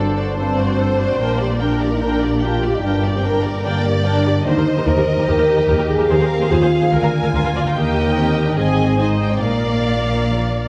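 From the first moment, a full symphony orchestra plays together in a fast, dramatic romantic movement at 146 BPM in 4/4, cut from a longer piece, with a lively, cheerful spirit. The violins carry the melody with lush, expressive vibrato and a soft attack, while a second violin line and the smooth, even violas fill in the accompaniment beneath them. A dark, distant French horn section holds sustained chords, and a mellow, thumb-plucked concert harp rings out arpeggios in the background. The low end comes from a rich, focused double bass section and a bowed cello section sitting further back. The music opens in G minor and brightens into Eb major at 4.5 s, moving through a quick run of chords before landing on Bb. A generous scoring stage reverb gives the whole ensemble a spacious, wet sound.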